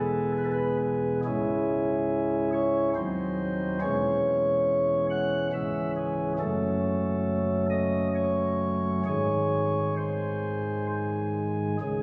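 A soft, warm pipe organ on flute stops plays alone and up front, its baroque voicing and chiff carrying a dark, solemn classical chorale in C# minor at a rubato 65-70 BPM in 3/4, moving from E through C#m and F#m to a G# chord at 9.1 seconds, all within a long, wet church reverb captured on a phone in the room with compression, in an excerpt cut from a longer piece.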